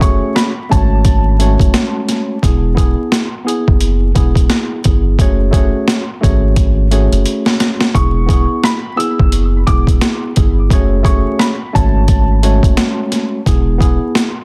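Boom-bap hip-hop with a gritty, dark mood and a swung 4/4 groove, cut from a longer piece, built on an up-front, pitched-down sampler-style drum kit with a thumpy kick, a high-tuned snare and overdriven grit, plus a drum fill from 6.6 to 7.9 seconds. A soft, round dub sub bass and a worn, slightly out-of-tune tine electric piano carry the F#madd9 and E chords throughout. A woody, slightly detuned upright piano plays a high melody with delay at the start and again from 7.9 seconds, all under a dense, heavily limited master dusted with vinyl crackle.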